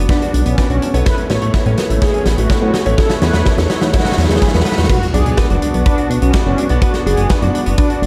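A melodramatic, nostalgic italo disco excerpt at 125 BPM in B minor opens on a detuned, warbling analog pad under a filter sweep, glossy nasal synth bass up front, clean picked electric guitar arpeggios and clear vintage grand piano stabs over Bm and Aadd9, as a big, natural rock kit with bright cymbals and gated reverb rolls through a fill beside a punchy kick, round dark synth brass carries the melody with tape echo, and a very quiet electronic riser lands on an impact at 4.9 seconds as the music returns to Bm.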